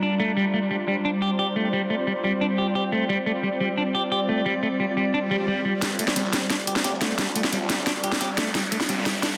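Mechanical and aggressive, this dark technical drum and bass excerpt opens on a swarming, detuned drone, a clean picked electric guitar arpeggiating up front through a low-pass filter and delay, and an ethereal, airy pad with ensemble chorus, before a background swell and riser arrive at 5.2 seconds and, at 5.8 seconds, a cracking, overdriven drum kit with bright hats drives a build-up and fill over a gritty, very quiet breakbeat layer and a swirling phased saw bass, all in a dense, heavily limited hall-reverb mix.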